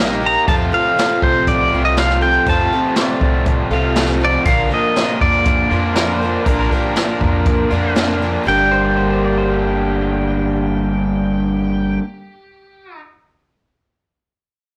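Reflective and wistful, this folk rock and heartland rock excerpt sets a shimmering, octave-doubled twelve-string acoustic guitar and a bright, overdriven garage guitar riff over woody, thumpy upright bass with transformer saturation and a brushed drum kit with a boomy kick, its snare softly clipped, which drops out at 8.1 seconds. A twangy pedal steel guitar with slapback echo carries the melody in fingerpicked slides and volume swells, while a second, mellower pedal steel joins in the background at 3.0 seconds. The chords move from F to Bb to G minor, and the whole recording sounds blown-out and overdriven in a moderate studio reverb.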